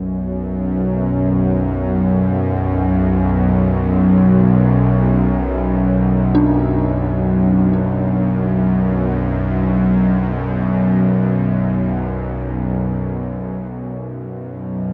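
Dark ambient drone in free time, cavernous and unsettling, where a tense, string-like bowed drone with a noise layer and vibrato sits up front from 0.0 seconds, joined at 6.3 seconds by an eerie, inharmonic synth bell playing mellow, decaying arpeggios through chorus, phaser and tape echo in the background, all inside a huge ambient reverb.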